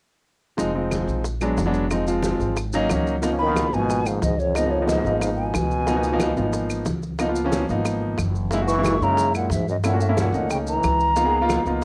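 Lively and danceable, this Afro-Cuban jazz excerpt moves at 182 BPM in Db mixolydian. An up-front grand piano with audible action noise and a cassette-tape tint plays over dark, woody pizzicato upright bass and grainy maracas, while tight high bongos, distant congas and dry claves sit in the background. At 3.4 seconds a breathy, hollow jazz flute with vibrato and chiff takes the melody, joined by a close-miked trombone whose plunger mute adds a wah-wah second line, all framed by light reverb as the harmony moves from Fm7 through Db13 and Gb13 before settling back on Db13 at 11.2 seconds.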